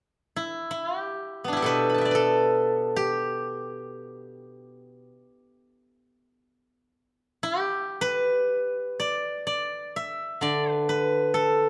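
A close, up-front acoustic sound with a light touch of reverb opens this short cut from a longer piece of Chinese traditional music for solo plucked strings. A single steel-string zither, played with fingerpicks, carries everything from 0.4 seconds to 11.7 seconds, its silvery, ringing tone spanning from B2 to B5. The music moves in free time in the G gong mode, giving it a serene, pastoral mood that feels unhurried and open. After the opening passage, a second section begins at 8.5 seconds and continues to the close of the cut.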